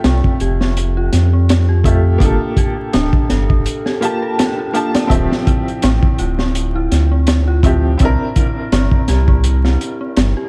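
A crunchy, gritty breakbeat kit with a punchy kick and high-tuned snare sets a swung 83 BPM trip hop groove in D minor, sitting up front beside a round, deep analog bass shaped by ring modulation. Over chords moving from Fmaj9 and Gm9 to Dm11 and C9, a clear, woody upright piano plays accompaniment through tremolo and tape echo, while an eerie, warbling detuned FM bell spins arpeggios under chorus and a filter sweep until 5.1 seconds. The cinematic, dark mood is framed by dark, warm production, vinyl crackle and a break from 3.7 to 5.1 seconds in this cut from a longer piece.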